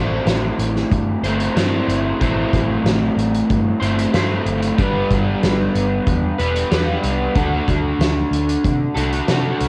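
A crunchy, double-tracked overdriven guitar with lush chorus sits up front playing a riff over Am, G and D in this wistful, dreamy shoegaze and dream pop rock excerpt at 93 BPM in 4/4, backed by a dark, round, foam-muted picked electric bass and a distant, roomy indie drum kit with a fat snare, punchy kick, hi-hat and cassette-tape coloring that enters at 0.3 seconds, all heard in a small room with a home-recorded cassette character.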